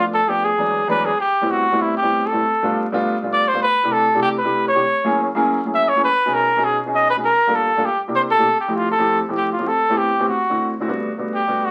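A trumpet and a grand piano begin together in this lively, sophisticated jazz passage in G major, moving at a brisk 198 BPM in a straight 4/4. The trumpet leads as an up-front, present soloist with a vibrato-laced, warm tone in a jazz style, while the piano accompanies with a warm, short-sustained touch through a colourful progression before settling on Gmaj9 at 10.9 seconds. Both sit in the wet ambience of a club, coloured by the crackle of a very old 78 rpm record, in a passage cut from a longer piece.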